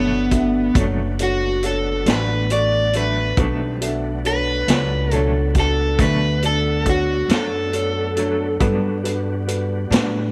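A slow 12/8 blues rolls along at 46 dotted-quarter beats per minute with a straight feel, its vintage drum kit coming in at 0.3 seconds with hi-hat, a punchy kick and a medium-tuned snare, the top end rolled off and the kit set up front. Beneath it, a woody pizzicato upright bass holds the low end, while a mellow grand piano, audible action noise and all, adds intimate accompaniment, and a clean electric guitar with tremolo sits dark and low in the background. A tonewheel organ through a slow rotary speaker with chorus vibrato lays smooth sustained chords far behind the band. Front and center, an overdriven semi-hollow guitar takes the solo with picked lines, its hollow-body tone carrying the mournful, smoky mood in B minor. The harmony rests on Bm7 before moving to Gmaj7 at 8.6 seconds, all wrapped in light reverb, in this short passage cut from a longer piece.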